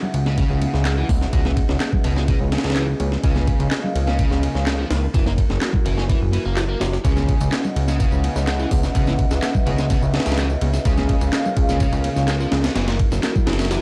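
Breakbeat at 126 BPM in C# dorian, this funky, raw passage is cut from a longer piece, driven by an up-front, compressed sampler-style drum kit with a thumpy kick, high-tuned snare, hi-hat and ride, and by a fat, detuned sawtooth bass with a filter sweep. A biting, double-tracked overdriven guitar riff enters at 0.3 s with tube saturation and analog delay, while a deep, moody pad holds sustained chords moving through C#m11, C#13 and F#7, colored by chorus, 12-bit sampler grit and sidechain pumping. Soft-handed congas and layered electronic handclaps and tambourine, the latter joining at 0.9 s, sit in the background of a dry, gritty cassette-tape recording.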